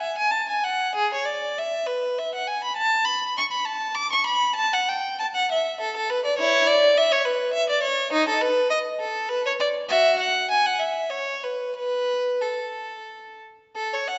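A rich, smooth solo violin, bowed by one player up front with even tone and vibrato, carries this radiant, flowing excerpt of a baroque-style classical suite movement in A major and 3/4 at 84-104 BPM with a rubato feel, ranging from D#4 to D6 across its 14.2 seconds inside a wet recital hall reverb with a 1.4-second decay and a soft, dark top end.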